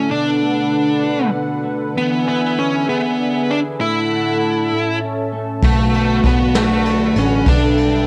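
Tender and heartfelt, this six-eight pop ballad opens with a dark, overdriven lead guitar carrying the melody up front over a bright, twangy, double-tracked twelve-string electric guitar and a mellow, detuned analog pad with chorus. At 5.6 seconds, three parts join: a brushed drum kit with a punchy kick and a rolled-off top, a round, foam-muted fingered electric bass, and a lush, bowed violin section adding a second line in the background. Light reverb and studio ambience frame the intimate sound of a home cassette recording.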